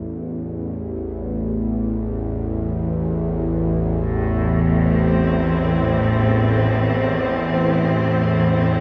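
In free time, this cavernous, dark ambient drone excerpt in A minor opens with a tense, wave-folded bowed-like drone with vibrato and a sawtooth edge sitting low and up front from 0.0 s, joined at 4.0 s by a lush, smooth symphonic cello section holding sustained chords, all bathed in a huge, wet reverb with a 7.5-second decay.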